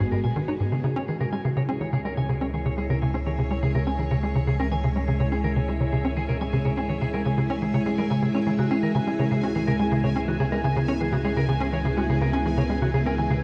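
Cosmic and mysterious, this short cut from a longer piece of ambient, sequencer-driven space music rides a tight, punchy sawtooth sequencer bass riff, up front with ensemble chorus and analog delay, while a filter sweep runs through it from 0.0 to 13.4 seconds. A lush, vintage string machine holds sustained chords over G#m7 and C#m, joined by a clean, picked electric guitar playing arpeggios through analog delay, a warbling pulse-width-modulated analog drone with tube saturation beneath, and a faint bubbling stepped-filter texture with resonant, detuned sawtooth tones. Everything sits in a dark, wet production with a huge ambient reverb.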